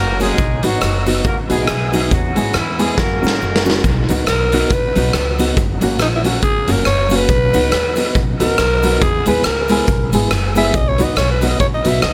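Cheerful, bouncy ska cut from a longer piece at 139 BPM in B major, where a clear, octave-doubled horn section with dub echo states the melody before a drum fill at 3.0 seconds hands over to a raspy, gritty alto saxophone solo from 4.3 seconds, all over a woody, growly pizzicato upright bass, a dark, tremolo-tinged electric guitar, a slightly detuned upright piano's stabs, a punchy, saturated garage drum kit up front, very quiet grainy cabasa and light reverb.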